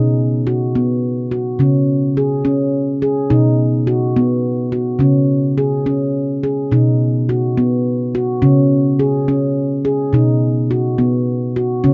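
Gentle and hypnotic, this meditative world piece in 6/8 is cut from a longer work and features a solo handpan of nitrided steel, played with soft fingertips, whose mellow, ringing tones span B2 to G#4 and sit close-miked and up front as the harmony rocks between B and C#5 chords in a short booth ambience with a rounded, softened top end.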